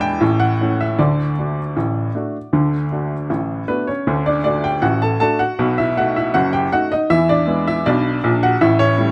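A woody, intimate upright piano plays this playful, cheerful ragtime fragment alone in a straight two-beat metre, its audible action noise sitting up front in a reverberant club room as the harmony moves through B7, E7 and A7 before the cut ends at 9.1 seconds.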